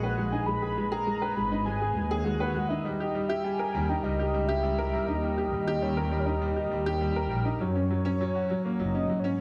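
Piano and strings electronica with an intimate, melancholic mood, moving in a straight 4/4 through G#m, D# and F#add9 in this short cut from a longer piece. A woody, slightly detuned and boxy upright piano plays an up-front riff touched with delay, while a muted symphonic double bass section, bowed con sordino with vibrato and a soft attack, lays a dark, veiled bass line beneath. Above them, a velvety, smooth synth lead blends sawtooth, triangle and square waves with a sub octave and a filter sweep, carrying the melody through chorus, tremolo and delay, and the whole sits in a lush hall reverb with a hint of small-room ambience.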